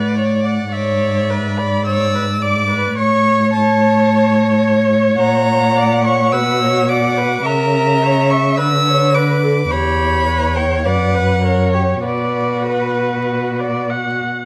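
A rich, up-front cello with soft attacks, portamento and expressive vibrato anchors this lively, spirited classical-period string quartet passage with a rubato feel, beneath a smooth, even first violin carrying the high melody, a focused second violin on a supporting line and a distant bowed viola accompaniment, all set in a moderate recital hall reverb flecked with vinyl crackle.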